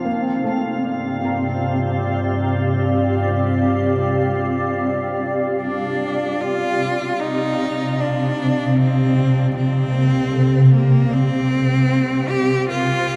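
This reflective, serene ambient passage, cut from a longer piece, opens with a cloudy, evolving granular pad up front and a soft, felt-muted upright piano playing very quiet arpeggios with audible action noise. A glassy texture of drifting overtones fades in from the background, while an organ-like drone with ensemble chorus and a deep, ominous rumbling bass drone settle beneath before both stop around 6.5 s. At 5.6 s a single clear, focused cello takes up the bowed melody, close and up front, its vibrato carried by diffuse ambient delay, all within the huge, wet reverb of a dark production.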